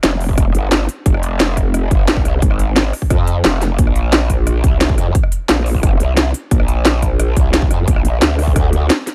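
Dark technical drum and bass with a tense, futuristic mood, this short cut from a longer piece rides a straight 4/4 groove from the first second. A growling, aggressive bass sits up front in the low register, its wobbling, formant-filtered tone saturated with overdrive, thickened by chorus and unison, and pumped by sidechain compression, with a fast attack and sustained, bright edge. The drum kit is also placed up front, with a cracking snare, crisp hi-hats and a rim click, all layered and tape-warm. An electronic kick enters at 0.3 seconds and hits with a punchy, produced weight until 8.6 seconds. A digital ambience frames the whole track as a single section that runs to 9.1 seconds.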